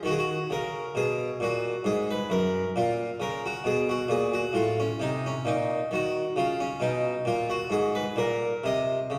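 Flowing and introspective, this brief cut from a longer baroque-style suite movement in Eb minor moves at a rubato 66 BPM in 3/4, with a solo Flemish-style harpsichord whose airy, plucked, full tone from two sets of strings sits up front, moving from a rootless Eb minor through Bb minor and an F7b13 over A before settling back on Bb minor, all within a concert hall's long, wet reverb heard from further back in the room.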